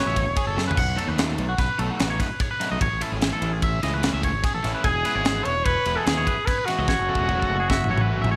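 Wistful and playful, this short math rock and midwest emo passage moves at 147 BPM in 5/4, in E major, with a twangy electric guitar picking bright, clean arpeggios over a double-tracked, crunchy overdriven guitar riff and a growling fingered bass with overdrive, all cycling through jazzy chords from F#m11 through B7, Amaj9 and Emaj7. A crisp, polished fusion drum kit with a high-tuned snare and tight kick sits up front, entering at 0.2 seconds and rolling into fills, including a closing one from 6.9 seconds. A clear trumpet with vibrato and slapback echo gives a brief opening phrase, then returns at 4.8 seconds with a punchy, roomy pop-style solo melody, all set in a small room with light reverb.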